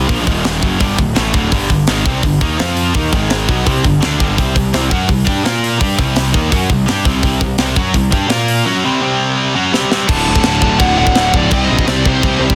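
A dense, heavily limited modern master with light reverb gives this dark, heavy metal passage a crushing, compact sound; it is a fragment cut from a longer piece. At 168 BPM in a straight 4/4, a pair of bright high-gain distorted guitars drives the riff from the start, one set back in the background, over a growly fuzz-picked bass that sounds overdriven both direct and through an amp. The acoustic drum kit sits up front in a studio room with a tight kick, a high-tuned snare and a rolled-off top, with crash, hi-hat, snare and kick all in play. The harmony moves through Bb5, Eb5, G5, F5 and C5 shapes, and a drum fill at 9.7 seconds leads into a new section at 10.1 seconds, where the chords turn to D and then C minor. Here a dark high-gain lead guitar carries the melody, joined by a very quiet, double-tracked, scooped third riff guitar and a distant, biting symphonic string section that holds sustained chords with light vibrato.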